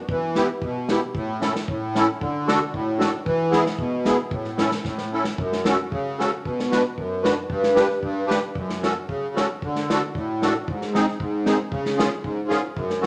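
Alpine folk in the manner of an alpine dance band, this bouncy, jolly cut from a longer piece moves at 114 BPM in a straight 2/4, starting in A major and shifting to F# minor at 5.4 s. A musette accordion carries the accompaniment throughout, its reedy, shimmering musette tuning captured close-miked, dry and full, sitting up front across a range from F#2 to B4. An unplugged acoustic drum kit, played with bundle sticks, supplies kick and snare from start to finish, pairing a punchy kick with a medium-tuned snare in a studio room, also placed up front. A drum fill from 4.8 to 5.4 s leads into the second section, where the harmony moves through F#m, Bm and G before closing on G# and C#. The whole is set in a wet large studio reverb with a 1.3-second decay.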